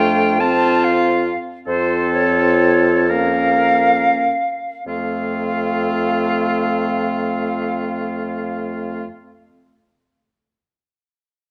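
A wet recital hall reverb, about 1.4 seconds long, gives this short fragment of a slow romantic classical movement for wind quintet a roomy, serene and tender air. In 6/8 and F major, tuned to A4 = 438 Hz, it moves with rubato at roughly 32 to 51 dotted-quarter beats per minute, slowing through the first 4.9 seconds as the harmony shifts from F to Bbm/F at 1.7 seconds. The silver concert flute sits up front with the melody, its pure metal tone, crisp attack and expressive vibrato heard from a little distance. Beneath it the oboe carries a second line with light vibrato and a distant, roomy colour. The clear French horn, with its own vibrato, and the soft-attacked, warm clarinet fill in the accompaniment, while the mellow, smooth-topped bassoon holds a low F for the bass. At 4.9 seconds the harmony returns to F as a new section opens, and the ensemble plays on until about 9 seconds.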